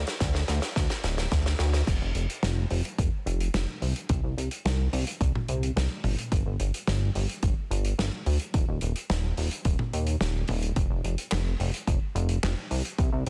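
A glossy, chorused synth bass built from pulse and sawtooth tones sits up front through this moody, cinematic synthwave excerpt at 108 BPM, joined by a punchy, overdriven electronic kick and a loose, dark-cymbaled acoustic kit with crash, handclaps, hi-hat, snare and toms that opens on a drum fill before the main section settles in at 1.9 seconds under light reverb and a dense, heavily limited master.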